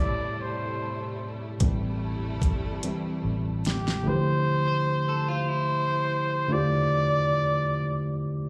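Slow R&B in a six-eight lilt, this late-night, sultry fragment moves at 49 BPM in D minor, cut from a longer piece and heard as a live gig through a venue's PA, with club reverb and lossy compression artefacts. A breathy, clear flugelhorn carries the melody up front throughout, with light vibrato, slapback echo and plate reverb, while a worn, barky tine electric piano, slightly out of tune and played through a combo amp, accompanies it for the whole span. A lush, bowed studio string section holds sustained chords beneath them over the Am7 harmony until 4.0 seconds, just before the Dm11 arrives at 4.1 seconds. At 1.6 seconds, after a break, a produced electronic drum kit with a knocking kick, fat snare and metallic hats joins alongside a dark, foam-muted fingered bass, as the electric piano takes a solo capped by a drum fill. Later, an electric guitar at the edge of break-up adds a picked second line, also treated with slapback echo and plate reverb, before the flugelhorn and electric piano carry on to the end.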